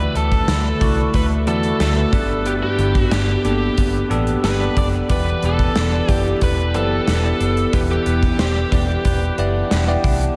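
1980s-style pop in E minor at 91 BPM, this dramatic, moody excerpt moves at an unhurried straight 4/4 pulse through Dadd9, G and Em7. A biting, overdriven lead guitar carries the melody with analog delay trailing its picked notes, while a bell-like tine electric piano supplies clean, direct accompaniment colored by phaser. Tucked in the background, a compressed twelve-string electric guitar plays a bright, picked riff through analog chorus and delay. Underneath, a vintage muted fingered bass gives a dark, round, foam-muted low end, and a gated 80s drum kit enters at 0.2 seconds with a punchy kick, medium-tuned snare and hi-hat sitting up front in a bright stone room. A huge ambient reverb with an 8.0-second tail soaks the whole mix, giving it a dreamy sheen.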